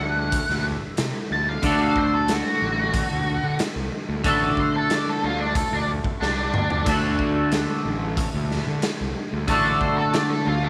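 Psychedelic rock at 92 BPM in a straight 4/4, this short cut from a longer piece sits in D mixolydian on a D chord and has a kaleidoscopic, trippy mood. An octave-fuzz lead guitar carries the melody as a solo throughout, its dark, distorted tone colored by wah and slapback echo, ranging from D4 to A5. Beneath it, a twangy electric guitar plays a clean, picked riff that is double-tracked and run through a rotary speaker, sitting bright and up front. A fingered electric bass adds a round, overdriven fuzz bottom between A1 and D3. The raw garage drum kit enters at 0.3 seconds with a punchy kick, medium-tuned snare, hi-hat, toms and crash, sounding gritty and saturated in a pumping stone room with a rolled-off top, and it plays a fill from 6.2 to 6.9 seconds. Light reverb and small room ambience frame the whole performance.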